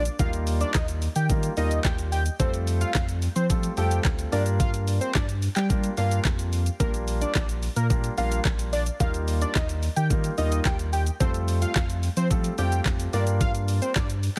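Dance-pop at 109 BPM in a straight 4/4, carefree and upbeat, where a fat, detuned sawtooth lead with chorus, phaser, delay and sidechain pumping carries the melody over a round sine sub bass, a clear concert grand piano voicing Ebadd9, Fadd9, Gm7 and Bb6, and an up-front smooth R&B drum kit with a knocking kick, woody snare, handclaps, shaker and hi-hat, all in a heavily compressed radio-style sound, cut from a longer piece.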